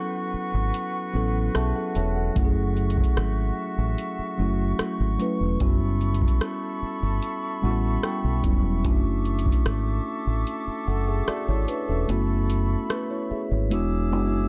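A mellow tine electric piano and a breathy, close-miked flute section open this moody, longing contemporary R&B excerpt at 74 BPM, with the piano playing a fill at 1.1 seconds over an opening break. A round, punchy dub bass and a booming analog drum machine with a deep kick, metallic hats and rim clicks arrive almost at once and sit up front. Chords such as A69, A13/F# and Dmaj7/F# drift through a dark, warm ambience, and the kick drops out at 12.1 seconds.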